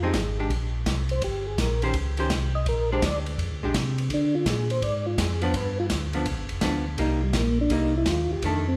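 A soul jazz organ trio opens at once with a percussive tonewheel organ carrying the melody in a soft, flute-like voice, its chorus vibrato and slow rotary speaker shimmering over a round, dark organ bass that sits up front with the same vibrato and rotary treatment. A clean, picked hollow-body archtop guitar fills in the accompaniment while a soul drum kit with a tight kick, medium-tuned snare, hi-hat and ride swings at 167 BPM in Bb mixolydian, its top end rolled off. The greasy, soulful groove sits in a moderate recital-hall reverb, cut from a longer piece and lasting just under 9 seconds, with the harmony moving from Fm7 through Bb9 and G7 to Cm7.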